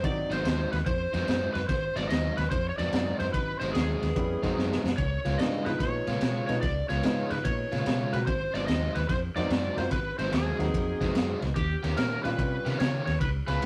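A swaggering, soulful electric blues shuffle in Ab mixolydian at 146 BPM opens with a bright, overdriven slide guitar carrying the melody up front, over a clear concert grand piano with short sustain, a round, punchy foam-muted bass and a gritty breakbeat kit with a high-tuned snare and dark cymbals. An overdriven hollow-body guitar joins with a picked riff at 0.3 seconds, the drums break into a fill at 4.6 seconds, and the harmony moves from Ab7 to Db7, back to Ab7 and on to Eb7. The piano drops out at 12.8 seconds in this fragment cut from a longer piece, which has the rough, tube-saturated feel of a rehearsal room with moderate reverb.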